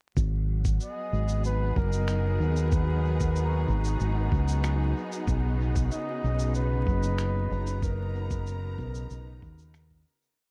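A round, punchy fingered electric bass underpins this meditative ambient dub piece at 94 BPM, its long gliding notes carrying a gentle tube saturation up front over a soft, thumpy electronic kick drum. A bright, lush string section holds slowly shifting chords built on Bmaj9, while sparse, muffled shaker and finger snaps drift through dub echo in a small room. A bucket-muted trumpet sings a veiled, mellow solo line of short call-like motifs with light vibrato, also trailed by dub echo. From 2.5 to 5.3 seconds a soft-mallet vibraphone adds ringing, filtered arpeggios in two slow loops of unequal length that drift against each other, with a filter sweep on it. An airy, wind-like tuned noise holds a high note in the background, and the dark production with vinyl crackle fades out from 7.0 seconds to the end.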